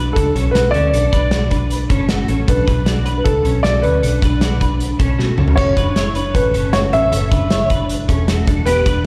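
Bittersweet and restless, this short excerpt of jangly indie pop in B minor moves at 155 BPM, with a woody, slightly detuned upright piano carrying the melody over bright, twangy twelve-string electric guitar arpeggios treated with chorus and slapback echo, a dark, foam-muted fingered bass, and a loose indie drum kit that enters at 0.2 seconds and breaks into a fill at 5.2 seconds, all heard as a live gig through the venue's PA with recital hall reverb while the chords move from Bm7 to F#m7 and Em7.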